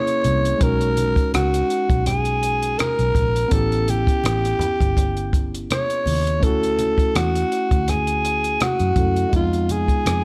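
A growling alto saxophone carries the melody up front in this lush 1970s-style soul excerpt, its raspy subtone and scooped notes trailed by tape echo, over an 82 BPM groove in 4/4 with a light swing on the 16ths. A barky, lightly overdriven tine electric piano accompanies through chords moving from F#7 and B6 to A7, Dmaj9 and Fm7b5, while a dark, round, foam-muted fingered electric bass and a compact cocktail kit of hi-hat, punchy kick and rim click hold a smooth pulse. Very quiet, low-tuned congas played with soft hands sit beneath, all framed by a small room reverb that keeps the mood warm.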